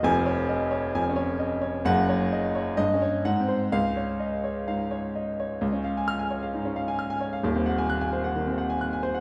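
Classical virtuoso piano study in D-flat major, heroic and brilliant, cut from a longer piece and moving at about 131 BPM in 4/4 with a free, rubato feel. A solo grand piano carries it from start to finish, spanning a sweeping range from low Eb1 to high Gb6 with a clear, intimate, natural tone, set up front so its audible action noise comes through. The playing sits in a wet recital hall heard from further back in the room, and the harmony turns through D-flat, G-flat and A-flat colours before the music moves into a new passage at 5.6 seconds.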